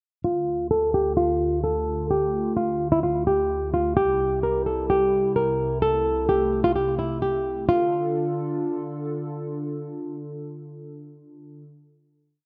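Eerie and melancholic, this short hip hop piece in a trap style sits at 129 BPM in 4/4 with a half-time feel, in D minor and tuned to A4 = 441 Hz. A thumb-plucked flamenco guitar carries the melody from 0.2 to 9.0 seconds, its woody tone and old strings placed up front, repeating a looping phrase like a sampled loop through a low-pass filter. Beneath it, a hollow, flute-like pad holds sustained chords from 0.2 to 11.6 seconds, its nasal, detuned tone treated with chorus and a low-pass filter, with a gentle attack and a dark cast. The opening breakdown moves from Dm to C while a filter sweep runs through it, and at 7.7 seconds the music settles on a final Dm chord. A moderate, lush hall reverb with a 2.6-second decay surrounds both parts and gives the piece a haunting sense of space.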